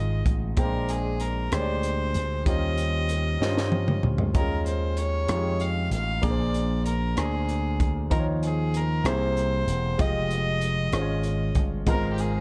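Slow gospel in a straight 6/8 at 64 BPM, reverent and jubilant, this short cut from a longer piece sets a clear, reedy fiddle melody over brilliant concert grand piano chords and an up-front slap bass whose envelope filter gives it a punchy, amped bite. A crisp fusion kit with a high-tuned snare, punchy kick and gritty, saturated small-room sound enters at 0.3 seconds and plays a drum fill from 3.4 to 4.3 seconds, as the harmony moves from Fm7 through Bb13, Eb13 and C7b13 toward Db/Ab. At 11.9 seconds a shouting tonewheel organ with overdrive, chorus vibrato and fast rotary speaker slips in behind on a closing Ab69, all within a dark production carrying light studio reverb.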